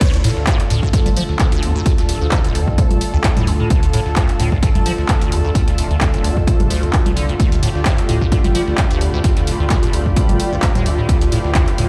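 A squelchy, resonant acid bass riff with phaser and tape echo drives this trippy, hypnotic acid house drop at 130 BPM in D dorian over a Dm chord, joined by a punchy up-front electronic kick, a round analog bass in the background, a lush, warbling unison pad with chorus, a punchy analog drum machine of congas, crash, handclaps and hi-hat, a very quiet gritty sampler-style kit of hi-hat, snare and tambourine, and a blurred granular cloud pad entering at 1.2 seconds, all set in a large studio reverb.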